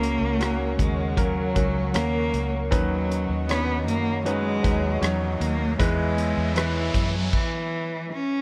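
Pop ballad, tender and heartfelt, cut from a longer piece: a nasal, boxy bowed cello with vibrato carries the melody up front over a brilliant, short-sustained grand piano accompaniment, dark, compressed electric guitar arpeggios and a round, foam-muted fingered bass. A punchy small-room country drum kit with crash, hi-hat, kick and rim click sits forward, while an airy, breathy detuned pad with chorus and a background electronic riser from 4.9 seconds add haze. The whole mix carries light reverb and the warbling pitch drift of worn cassette tape. A stop arrives at 7.3 seconds: piano and drums trail off just after, the guitar fades by 7.9 seconds, and the cello rings on until 8.4 seconds.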